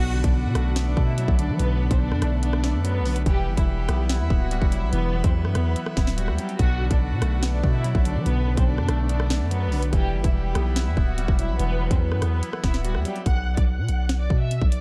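Drill hip hop with an ominous, cold mood and a half-time feel, this excerpt sets a distant, lush violin section singing an expressive melody with vibrato and portamento over a clean, twangy electric guitar drenched in chorus and delay, while a reedy accordion holds sustained chords in the background. Up front, a deep, sine-toned 808-style bass with a fast attack rumbles beneath a produced drill kit of hard-clipped kick, sharp snare, rim click and bright hi-hats, which enters at 0.2 seconds. The mix is dry of reverb but heavy with echo, and the guitar and accordion drop out around 13.3 seconds as the harmony settles onto a plain minor chord, leaving strings, bass and drums to close.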